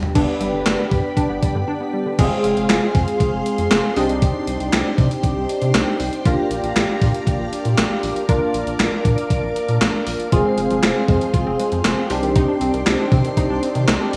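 A thumpy, up-front gated 80s digital drum machine with a gated reverb snare and handclaps drives this nocturnal synth-pop excerpt in C minor at 118 BPM alongside mellow organ-like ensemble strings. At 0.2 seconds they are joined by a rubbery, bouncy square bass, a punchy, funky detuned polysynth comp with chorus, and a lush, wave-folded unison pluck arpeggio with analog delay. The arpeggio sits in the background until 2.2 seconds and returns at 10.3 seconds, all set in a lush hall reverb with a rough home-demo feel.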